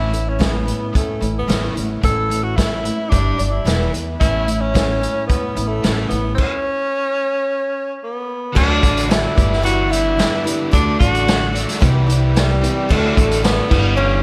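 This hopeful folk rock and heartland rock excerpt opens with a clear tenor saxophone carrying the melody up front, its vibrato and smooth top riding over a picked steel-string acoustic guitar, a bright, crunchy, double-tracked overdriven guitar riff and a woody pizzicato upright bass. The saxophone and both guitars, which sit in the background, carry a slapback echo. A roomy vintage drum kit with dark cymbals, a medium-tuned snare and a punchy kick drives a straight 4/4 groove with a rolled-off top. After a stop between 6.4 and 8.6 seconds, the second section begins, and a mellow, reedy electric piano and a very quiet tonewheel organ through a rotary speaker join from 8.5 seconds. A lush hall reverb gives the whole band a big arena sound and a warm, open glow.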